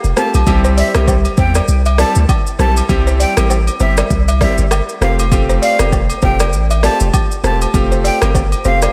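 A breathy, bright jazz flute with vibrato and a crisp chiff carries the melody through this joyful, breezy afrobeats passage, its line trailing into a diffuse ambient delay. Beneath it, a punchy sine sub bass sits up front over an overdriven deep house kit of deep kick, hi-hat, rim click and shaker, while an intimate grand piano with audible action noise plays accompaniment. A woody, buzzing balafon riff with its own echoing delay stays in the background, close acoustic agogo bells and woodblock add color, and the dreamy, reverb-soaked mix shifts from C to Fadd9 at 5.0 seconds.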